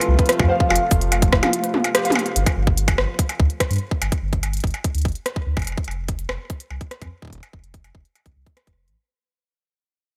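A wistful, playful IDM excerpt opens with a felt-muted upright piano melody echoing softly in the background, a nostalgic, detuned tape-like pad holding chords, and a dusty, lo-fi pluck spinning arpeggios through phaser, chorus, delay and cassette-tape grit, all over an overdriven glitchy kit of clicky hats, rim clicks, shaker, toms and percussion blips. A round sine sub bass and a tight, up-front overdriven kick join almost at once. A band accent at 1.9 seconds coincides with the piano falling away, and the pluck and pad drop out shortly after. From 2.4 seconds to 9.0 seconds, only drums and bass remain as the piece fades out, bathed in a lush hall reverb with a bright 1980s-style digital sheen.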